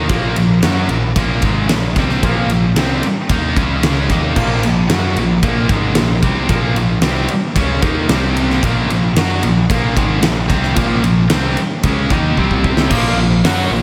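A straight 4/4 pulse at 112 BPM drives this heavy, menacing hard rock passage in Bb minor, cut from a longer piece. Up front, a scooped, high-gain guitar, double-tracked and bright, plays the main riff through distortion and a slapback echo. Beneath it, a picked electric bass adds a growly, amped low end, and a huge arena drum kit sits forward in a big room, with a fat snare, punchy kick, hi-hat, ride and crash. The harmony moves between Bb5, Db5 and C5 power chords and Bbm, and a drum fill at 12.4 seconds leads into a second, tight distorted guitar, picked and tucked into the background, entering at 12.9 seconds. Light reverb and a small room ambience surround the parts.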